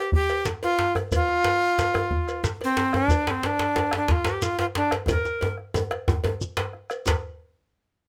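An airy, chiffy tenor recorder with expressive vibrato carries the melody up front from the start until 5.6 seconds, opening this earthy, powerful West African drum ensemble passage in 12/8 at 121 BPM, counted in dotted quarters. Beneath it, a round, close bombo joins a grainy shekere, a metallic cowbell and a soft-handed, medium-tuned djembe that sit close and dry, while a second djembe, tight and cracking with metal rattles and saturated compression, pushes forward with hard hands. A drum fill runs from 5.1 seconds to 7.1 seconds in this short cut, framed by light reverb and detailed, close microphones.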